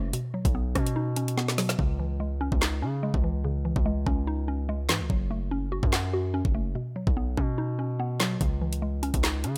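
A distorted 808-style bass anchors this menacing drill excerpt: heavy and aggressive, its sine core is roughened by a noise layer, with a fast attack and decaying notes sitting up front. The drill drum kit is electronic and produced, with a knocking kick, a woody snare, metallic hi-hats, rim clicks and handclaps sitting up front in the mix at 145 BPM in 4/4 with a half-time feel. A mallet-like FM synth pluck carries the accompaniment across a range spanning low to high register with a round, mellow tone, colored by chorus, phaser and a low-pass filter. The ominous harmony in C# minor moves through Badd9, C#madd9, F#m and back, all wrapped in a digital ambience. A drum fill arrives at 1.4 seconds, and from 1.8 seconds the hi-hats drop out until 8.4 seconds, thinning the groove while the bass and pluck continue to the cut.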